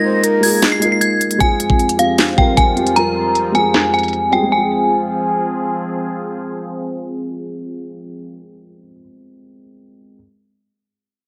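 A ringing, inharmonic FM bell carries the melody high over this dark, melancholic trap excerpt at 154 BPM in a half-time feel in F minor, with a breathy, flute-like synth lead adding a brief second line at the very start. A dark, boxy grand piano with audible action noise plays the accompaniment alongside a warbling, detuned sawtooth pad holding sustained chords that move from Bb7sus4 to Fmadd9 to Fm. The up-front trap kit of knocking kick, sharp snare, crisp hats and handclaps plays from 0.2 to 4.4 seconds, its kick dropping out from 3.0 seconds, after which the bell, piano and pad carry on in a lightly reverberant mix.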